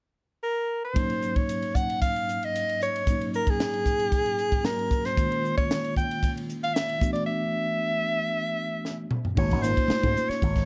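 Soaring and bright, this short electric jazz fusion passage moves at 114 BPM in a straight 4/4, with a clear, close-miked soprano saxophone carrying a vibrato-rich solo melody up front, touched by slapback echo, over clean, bell-like tine electric piano chords on ninth-suspended harmonies. A crisp, polished drum kit with a high-tuned snare and tight kick enters at 1.0 seconds and plays a fill leading into a new section at 9.4 seconds, where a growly, punchy slap bass with an envelope filter joins alongside damped, high-tuned congas sitting in the background. The production is dark and dry.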